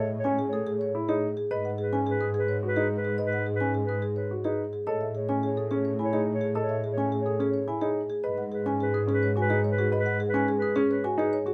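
Minimalist classical pattern music, propulsive and bright at 107 BPM in a straight 3/4, cut from a longer piece: a woody marimba on rosewood bars carries the melody from 0.0 s, a dark, smooth-topped clarinet sings a second line above a rich, bowed double bass section with vibrato, and a mellow baby grand piano with short sustain enters at 0.2 s with arpeggios, all moving between Amaj7 and G#m chords under close, detailed miking with little reverb.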